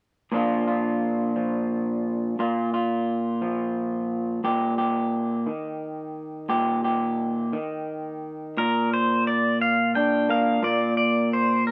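The recording has a light reverb, and it is a short fragment cut from a longer piece. This acoustic folk-pop ballad in a straight 6/8 feels hopeful and heartfelt. From the start, an electric guitar played through a small old amp carries the accompaniment up front. It is fingered, dark, lo-fi and slightly broken-up, with a compressed low-to-middle tone, and its harmony shifts at 4.4 seconds. At 8.6 seconds a new section begins as a pedal steel guitar takes the melody in a higher register. Played with fingerpicks and slide, the steel is bright, clean and twangy, with volume swells and a compressed, forward presence that carries through to the close at 11.7 seconds.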